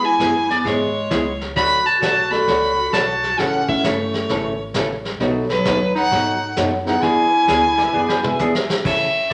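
Cheerful and down-home, this western swing excerpt moves at 132 BPM with a swung 4/4 feel. A rich, focused fiddle carries the melody up front with light vibrato, shadowed by a warm subtone clarinet, while a dark, boxy upright piano and a clean, hollow-body archtop guitar comp over an E, D, A, B7, E7 progression. A woody, growly upright bass and a vintage brush kit with a fat snare hold the groove in a reverberant studio, and a bright pedal steel slides in with volume swells at 7.8 s as the drums play a fill from 7.9 to 8.8 s.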